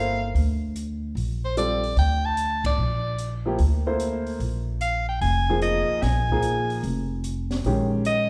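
Spiritual and intense, this brief cut from a longer modal jazz piece swings at 148 BPM in 4/4, with a bright soprano saxophone carrying the melody up front over clear grand piano chords moving from Gmadd9 to Bbm11, a woody pizzicato upright bass, and an open jazz drum kit with dark cymbals, a high-tuned snare and a boomy kick entering at 0.4 seconds, all sitting in a moderate recital hall reverb, with a band accent at 2.6 seconds.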